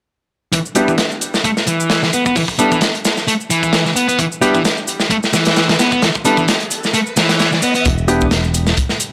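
A sludgy, overdriven electric guitar leads this gritty, funky breakbeat excerpt, picking a dark riff on an E5 chord between E3 and B3 through a low-pass filter and analog delay. Beneath it, a crunchy acoustic breakbeat kit sits up front with a tight kick, a medium-tuned snare and a saturated, rolled-off top, swung on the 16ths at 131 BPM in E minor, while a layered electronic shaker ticks in the background. A clear grand piano with long sustain adds filtered, delayed stabs between B3 and A4. At 6.2 seconds a background riser enters, and the kick drops out at 6.9 seconds. At 7.9 seconds the chords fall away, the guitar has stopped, and a bright, growly fingered bass lands a punchy low E1 while the piano gets a filter sweep. The recording has a dry, hardware character with light small-room reverb.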